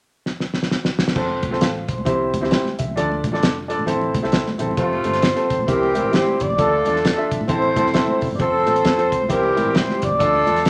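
Uptempo 1960s-style soul at 133 BPM in F major, swung and joyful, this excerpt opens with a cloth-damped, thuddy drum kit playing a fill from 0.3 s, its fat snare, tight kick and dark cymbals sitting dry and up front. An intimate grand piano with audible action noise enters at 1.1 s to comp in the middle register. At 1.2 s the band settles into a cycling F, C, Dm, Am progression, as a round, foam-muted vintage electric bass holds the low end and bright, high-tuned congas with hard hands tap along in the background. From 4.8 s a breathy alto saxophone takes the melody in a jazz style, its subtone, scooped notes and light vibrato giving a soft, smooth edge. Alongside it, a tight pop-style horn section plays a second line with octave doubling, glowing and up front. A moderate large studio reverb lends the whole group a sense of room while the groove stays buoyant and upbeat.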